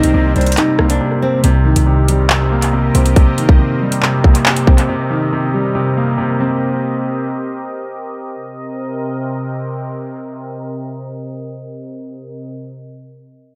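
A cold, ominous drill cut in C minor at 139 BPM with a half-time feel opens on a Cm7 chord, with several parts entering together. A fingerpicked classical nylon-string guitar carries the melody, a faint, chiffy cane pan-pipe second line sits in the background, and a deep, smooth, vintage grand piano plays accompaniment up front through a low-pass filter and analog delay. Beneath them, a punchy 808-style bass with a sine body, noise layer and fast attack hits hard, while the electronic drill kit, with its hard-clipped kick, metallic hats, handclaps and rim clicks, also sits up front and carries analog delay. The pan pipes fade by 0.6 s, and after a short break at 1.0 s the guitar falls away at 1.4 s as a filter sweep begins. The bass drops out at 3.2 s, the drums at 4.9 s and the piano at 7.5 s. The detuned sawtooth pad, bright and resonant with chorus and a slow, evolving filter swell, then sustains alone until 12.6 s in an echo-heavy mix with light studio reverb.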